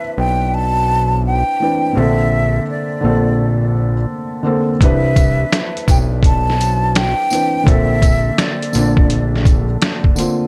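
A small room's reverb softly surrounds this mellow, dreamy lo-fi hip hop excerpt at 84 BPM with a 16th-note swing, where a breathy concert flute with vibrato and tape echo carries the melody over a felt-muted upright piano whose action noise is audible, while a fat, saturated analog bass with a plucky filter holds the low end as the chords move between Cmaj9 and Bbmaj9. At 4.8 s a gritty, pitched-down, sampler-style drum kit arrives up front with a thumpy kick, snare, hi-hat and finger snaps, and a jingly tambourine sits low in the mix from 5.2 s. The flute stops at 9.5 s and the bass at 9.8 s, while the drums and tambourine play on to 10.4 s and the piano carries on until 10.5 s.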